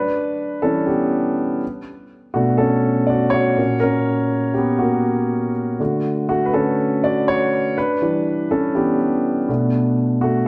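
Bathed in a large, wet studio reverb, this short uplifting pop piece at 122 BPM features a concert grand piano playing solo for the full 10.5 seconds, its tone warm with a deep bass and placed up front, with a digital delay trailing its notes. The hopeful harmony moves through Em7, Bm7, F#/A# and D before returning to Em7 and Bm7, with the piano tuned to A4 = 441 Hz and spanning A#2 to D5. It is a fragment cut from a longer piece.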